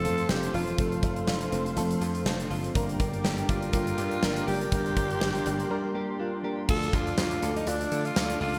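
Driven by a huge arena drum kit at 122 BPM in 4/4 with a light 16th-note swing, this 1980s-style pop passage carries a dramatic, nostalgic mood, its punchy kick, medium-tuned snare, bright cymbals, hi-hat and tambourine sitting up front in gated reverb. A dry, foam-muted thumbed slap bass adds a punchy low end, while a mellow FM electric piano with a round, warbling, vintage tone and chorus supplies the accompaniment over chords moving from F to Gm. A breathy alto saxophone leads the melody with a raspy, gritty edge, scooped notes and vibrato. In the background, a brassy analog pad holds airy sustained chords with a filter swell and moving notch, and a compressed clean electric guitar picks a riff through lush chorus and delay. Very quiet, full-bodied synth brass stabs drop out at 6.6 s, near the end of a break that runs from 5.7 s and gives way to a new section on Dm at 6.7 s, all within bright digital production and a moderate plate reverb.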